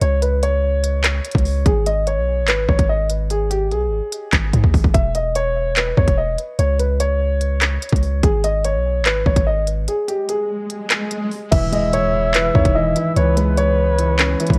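A dark, boxy grand piano carries the melody of this menacing, cold drill track, sitting up front with a tape echo trailing its notes through the middle register. Beneath it, a deep, long 808-style bass with a sine tone and fast attack decays under each note, while an electronic drill kit of hard-clipped kick, crisp hi-hats, rim clicks, handclaps and crash cymbal drives a half-time feel at 146 BPM in G# minor. After a drum fill, a break arrives, and within it a swell rises from 10.3 seconds into an electronic impact. At 11.5 seconds the harmony moves to Emaj7, a breathy, flute-like synth lead with chorus, vibrato and tape echo takes up a second line, and a felt-muted upright piano adds soft, intimate, vintage accompaniment. The whole mix is dry and marked by worn, warbling cassette tape with a drifting pitch, and this cut from a longer piece ends at 14.6 seconds.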